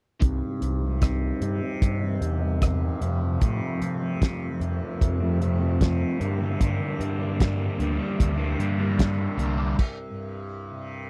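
A cloth-damped, thuddy drum kit sits up front with a fat snare, tight kick and dark cymbals, driving this trippy, hypnotic psychedelic rock passage in C dorian at 75 BPM, while a double-tracked, overdriven semi-hollow guitar riff runs through a phaser and low-pass filter sweep over a round, punchy overdriven bass. A bright, buzzing tanpura drone shimmers softly underneath as the harmony moves through Cm, Fadd9 and Gm before the band stops around 9.8 seconds and the drone rings on to 11.1 seconds. The sound is dry and close, like a 1970s studio recording, cut from a longer piece.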